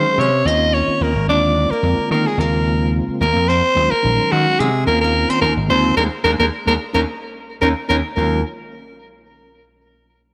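Bright, 1980s-style digital production with a plate-reverb sheen and a faint mains hum frames this funky, slick jazz excerpt in swung 4/4. A raspy, growling soprano saxophone carries the melody up front over a punchy vintage slap bass, a soft, flute-like tonewheel organ with chorus vibrato and key click, and a dark, hollow-body archtop guitar with lush chorus tucked in the background, with a band accent from 6.0 to 8.2 seconds.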